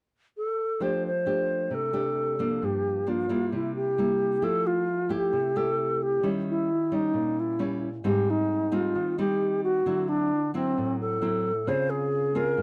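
An airy, up-front wooden-headed alto flute with vibrato, a crisp attack and rolled-off highs carries the melody from 0.4 s in this sophisticated, sunny bossa nova in F major, cut from a longer piece, at 132 BPM in a straight 4/4 and tuned to A4 = 444 Hz. A warm, full-bodied, fingerpicked classical nylon-string guitar joins at 0.8 s, close and present, voicing F69, Gm7 and C7 before the harmony turns more colorful from 4.4 s through Fmaj9, Eb7b9, Abmaj7, D9 and Dbmaj7. The sound is a dry, close 1970s-style studio recording with light reverb.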